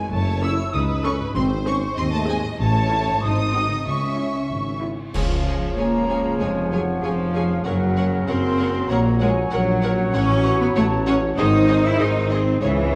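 In a straight 2/4 pulse, this quirky, whimsical cinematic cue, cut from a longer piece, sets a distant, vibrato-rich violin section on the melody over a second violin line, pure tongued flutes, very quiet smooth violas, mellow sustained French horns, a ringing fingerpicked harp and a low bed of cellos, focused double basses and tuba, while cymbal swell, bright clash cymbals and concert bass drum sound from 2.6 to 6.4 s, and a background clarinet and clear bassoon join at 5.1 s as a band accent opens a magical second section, in a dark, reverberant scoring-stage sound.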